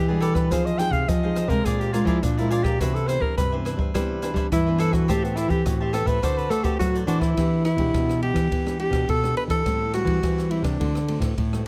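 A breathy, up-front alto saxophone carries a yearning yet lively samba-choro melody in a jazz style, its clear subtone and vibrato set in slapback echo and plate reverb as it solos through the first 7.4 seconds. A dark, fingerpicked classical nylon-string guitar comps chords such as Em9, Cmaj9 and D13, while a second, warmer nylon-string guitar plays the bass line from the background, and a crisp, picked cavaquinho adds bright accompaniment until 7.4 seconds. An acoustic jazz kit sits up front with a boomy kick, hi-hat, rim clicks and dark ride cymbals, all captured with close, detailed microphones in light reverb, in this fragment cut from a longer piece.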